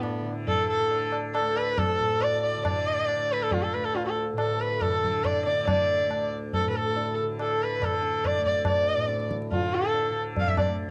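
The bowed sarangi leads up front with a rich, gliding line, carrying light vibrato and smooth portamento, while its sympathetic strings resonate beneath the single player's even tone. This short Hindustani classical passage, cut from a longer piece, feels introspective and meditative, moving in a seven-beat cycle that gradually speeds up across its 10.9 seconds. A very quiet pedal harmonium adds a reedy, breathing second line. Beneath it, a softly plucked tanpura sustains a mellow, buzzing, shimmering drone. Low-tuned tabla adds ringing acoustic percussion with a small-room character. The sarangi and tanpura carry the colour of cassette tape, and the home recording sits in a modest booth ambience marked by lossy compression artefacts.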